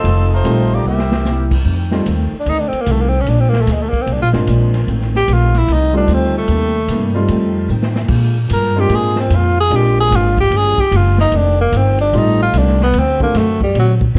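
A mellow saxophone section with vintage vibrato opens this brief, swinging big-band jazz cut at 149 BPM in F mixolydian, over a growly, woody upright bass up front, a boxy picked acoustic guitar in the background, and a natural-sounding drum kit with a punchy kick that adds a couple of fills. The section stops at 1.5 seconds, and a breathy tenor saxophone takes a clear, present solo from 2.4 seconds with light vibrato and scooped notes, while a grand piano accompanies through changes moving among F7, Bb7, Cm7 and D7. The production is dark and warm, set in a moderate large studio reverb.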